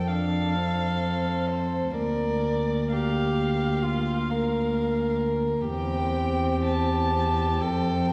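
Classical, a lyrical and tender slow romantic movement for string quartet in 4/4, heard as a brief passage from a longer piece, with a flexible rubato feel as the harmony moves from F through Bb/D and C/E back to F. The first violin carries the melody with a dark, woody, distant tone and vibrato, while the second violin sits up front on a pure, floating second line played sul tasto. Beneath them the viola adds a nasal accompaniment with vibrato, and the close, intimate cello anchors the bass with light vibrato and an airy bow, all of it set back in a wet concert hall with a long, lingering reverb.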